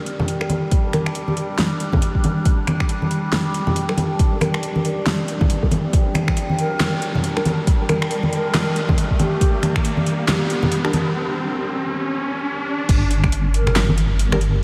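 A resonant drone with evolving overtones opens this cavernous, meditative slice of deep dubstep, soon joined by a tape-warm deep house kit with fat snare, metallic hats, finger snaps and handclaps, bright compressed congas trailing dub echo, a deep kick up front, and a muted, filter-swept chord stab sitting in the background. A riser enters at 3.3 seconds, and a breathy, hollow shakuhachi with vibrato and 12-bit grit drifts in and out as the build-up thins into a break at 11.2 seconds. At 12.9 seconds the drop lands on a dark, detuned wobble bass, all of it soaked in a huge, dreamy reverb with vinyl crackle.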